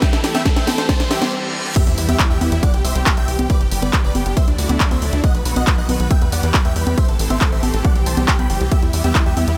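Bittersweet and soaring, this uplifting trance piece in E minor at 138 BPM, tuned slightly flat of concert pitch, opens mid-build-up, with a drum fill, a background riser and reverse cymbal, and a very quiet, round analog pluck arpeggio heard only briefly before the drop lands at 1.8 s with an impact and sub drop. Throughout, a huge, euphoric supersaw lead with digital delay carries the melody over a lush, warbling vintage unison pad with chorus, and both pump against the sidechain along with a tight, nasal sequencer bass. Up front, an overdriven punchy kick and a layered house kit of congas, crash cymbal, handclaps, hi-hat and cracking snare drive the chords from Em through C, G, Dadd9 and B, all set in a large, digital-sounding ambience.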